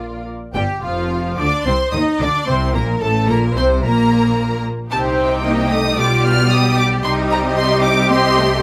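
Cheerful and lively, this short cut from a quick classical-period movement for string orchestra moves at 111 BPM in 4/4 with a rubato feel, passing from Bb through C minor colours and a G7/B before settling on Cm. Clear, intense violins carry the high melody over a second violin line, supported by a focused viola accompaniment and up-front, rich double basses, every section bowed with vibrato, while smooth, even cellos join in the background at 0.6 s. The ensemble sounds distant and lush in a moderate studio reverb.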